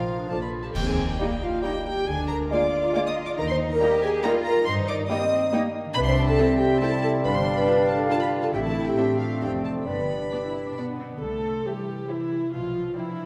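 A playful, whimsical film cue in three-time opens with a very quiet, soft-edged violin melody played sul tasto, joined by a second violin line, a clear clarinet, an airy silver flute, a mellow bassoon, sustained French horn chords with light vibrato, and ringing fingerpicked harp arpeggios. Dark violas, cellos and a floating double bass section enter at 0.3 s, a brief band accent lands at 0.7 s, and clash cymbals and a concert bass drum with bright cymbals join it at 0.8 s. The woodwinds fall away at 11.0 s as the strings, horns and harp carry on into a short closing passage, all bathed in a wet scoring-stage reverb in this fragment cut from a longer piece.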